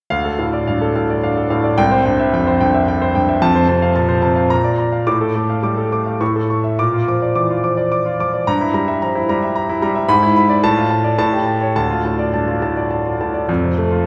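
Stormy and passionate, this short classical excerpt is a virtuoso piano study in D minor, moving in 3/4 at roughly 102-112 BPM with a free, rubato feel. A bright concert grand piano plays solo from 0.1 to 14.1 seconds, ranging from deep bass at C2 up to D6. Its tone is brilliant and polished with long sustain, and the instrument sits up front and present, close enough that the action noise of the keys is audible and the sound feels intimate. At the same time, a wet recital hall reverb places the listener further back in the room. The harmony drives restlessly from D minor through C, F and B-flat to A, then darkens through a diminished chord and E7 before cadencing on A7 to D minor at 11.8 seconds. The passage closes on F at 13.5 seconds, cut from a longer piece.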